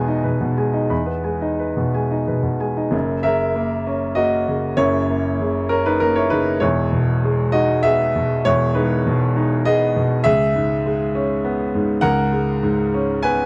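A solo grand piano opens this melancholic, wistful neoclassical minimalist piece, its smooth, vintage tone sitting up front and spanning E1 to B5 in a rubato 3/4 that drifts between 87 and 102 BPM. The harmony moves from Emaj7 to F#7 at 2.9 seconds, back to Emaj7, then settles on C#m7 at 10.3 seconds. Light reverb and a dark, warm production frame this short fragment of a longer work.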